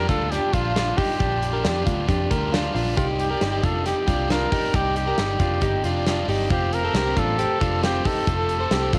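Youthful and nostalgic, this jangly indie pop excerpt moves at 136 BPM in Bb major, with a trumpet carrying a pop-style melody with light vibrato over chords of Bb6, Cmadd9 and Fadd9. A biting overdriven guitar and a compressed, direct-recorded clean electric guitar picking arpeggios fill out the accompaniment, while a dark, round, foam-muted picked bass gives a punchy low end. A big-room acoustic drum kit with a tight kick and medium-tuned snare joins at 0.1 s; the trumpet, both guitars and the drums carry a cassette-tape character under light studio reverb, lending the whole a homemade feel.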